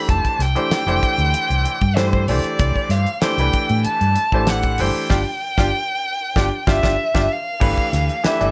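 A straight 4/4 groove at 96 BPM drives this short cut from a longer electric jazz fusion piece in G mixolydian, funky in its push and soaring in its lift. A damped 70s acoustic drum kit sits dry, with a fat snare, tight kick, hi-hat and crash cymbal, while a hollow-body short-scale electric bass, played with the fingers, gives a round, punchy, amped low end. Up front, a single bowed violin carries the melody with a dark, woody sul tasto tone and vibrato, ranging from C5 to B5. A bright concert grand piano accompanies with a brilliant yet worn, intimate character, audible action noise, deep bass and long sustain, moving through Fmaj9, C6 and G7 voicings. The band hits a shared accent from 5.1 seconds, and a drum fill at 7.3 seconds leads into a closing G7, all set in light reverb.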